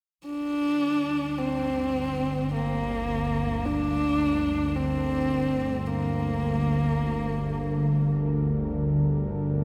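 A husky, woody horsehead fiddle carries an up-front melody with vibrato and portamento through a diffuse ambient delay from 0.3 to 8.1 seconds in this unsettling, dark ambient drone in G minor, in free time and tuned to A4 = 439 Hz. It sits above a tense, ring-modulated bowed-like drone that enters at 0.9 seconds with its own built-in reverb, alongside a very quiet, detuned, chorused sawtooth pad holding sustained chords, the mix set in a wet cathedral reverb.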